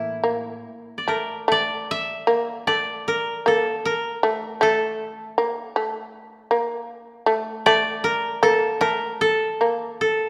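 Set at 77 BPM in 4/4 but played with a free, rubato feel, this short piece of Japanese chamber music is cut from a longer work and carries an austere, calm mood. A koto leads the melody, its fingerpicked tone dry and woody and sitting up front, moving between A4 and E5 across the whole passage. Beneath it a fretless shamisen plays a second line in a narrow low range from A3 to Bb3, its plectrum-plucked notes percussive with a distinctive buzz. A second koto, brighter in tone, adds accompaniment from A2 to E4 only during the opening 1.5 seconds before dropping away, leaving the melody and shamisen to carry the rest through 10.3 seconds. The players sound close and present, set within a moderate concert hall reverb that lends the spare texture a sense of space.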